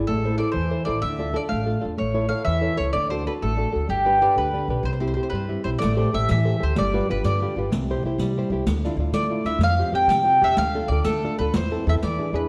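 A sunny, romantic Italian folk serenade moves at 126 BPM in a lilting 6/8, set in C major before turning to A minor at 5.8 seconds in this short piece cut from a longer work. The mandolin carries the melody up front, its picked double strings giving a round, warm tone that sits a little above the rest of the band. Beside it, a dark flamenco guitar fingerpicks the accompaniment, close and present, with audible finger squeaks on the strings. An upright bass plays pizzicato underneath with a woody, steel-strung sound thickened by tube saturation. From 5.8 seconds a riq joins with dark jingles, sitting further back as if in a small room, while the harmony wanders through chords like Am7, Dmadd9 and Fsus2 before settling on E7. The whole recording floats in a wet recital-hall reverb and carries the worn, warbling pitch drift of old cassette tape.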